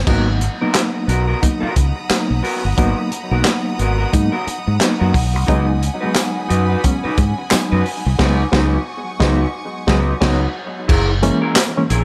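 Energetic and strutting, this funk excerpt at 89 BPM swings its sixteenths over G#m9 and C#9sus4 as a gritty, saturated breakbeat kit with a punchy kick and high-tuned snare sits up front beside a round fingered bass, while a twangy, slightly broken-up guitar through a small old amp, reedy electric piano stabs with fast tremolo and tape echo, and lush bowed strings fill the small room, a jingly tambourine joins at 6.2 seconds, and the band hits accents from 8.2 seconds before landing on F#9 at 10.9 seconds.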